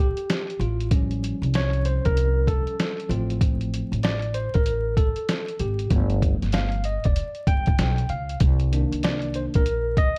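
Jazz-hop with a cool, smoky mood at 96 BPM in 4/4, its sixteenths swung, in C dorian and cut from a longer piece. A clean tine electric piano, heard through its built-in speakers, takes a solo throughout over a woody, dark pizzicato upright bass with steel strings and a compressed, muffled, pitched-down sampler-style trip hop kit that brings a thumpy kick and medium-tuned snare in at 0.2 seconds. The dry, gritty recording sits in a small room with vinyl crackle, and the harmony moves through A7alt, Bbmaj7sus2 and G7 to Cm9.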